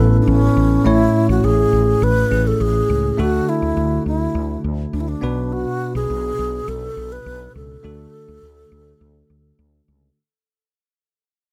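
Uplifting and nostalgic, this 1980s-style pop passage moves at 103 BPM in a straight 4/4, with a bell-like, bright tine electric piano and a round, dark fretless electric bass carrying chords that move from Aadd9 through A, D and Bm. Over them a breathy alto flute with a wooden head sings the melody with a soft attack, vibrato and a slightly unsteady tone, all three parts sitting up front in light reverb. A fade-out runs from 0.9 to 10.2 seconds, and the fragment is cut from a longer piece.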